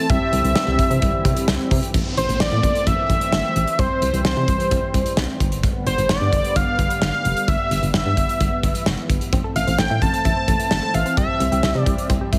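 Synth-pop at 130 BPM in A minor, nocturnal and driving, where a bold, bright octave-doubled lead with chorus and tape echo carries the melody up front over a phased, swirling analog pad, a punchy, round FM bass and a punchy modern studio drum kit, while mellow synth brass plays only until 1.9 seconds, a background downlifter sweeps through from 1.9 to 5.6 seconds, and a nasal analog pluck adds arpeggios from 9.3 seconds, all under light studio reverb and a heavily compressed radio sound.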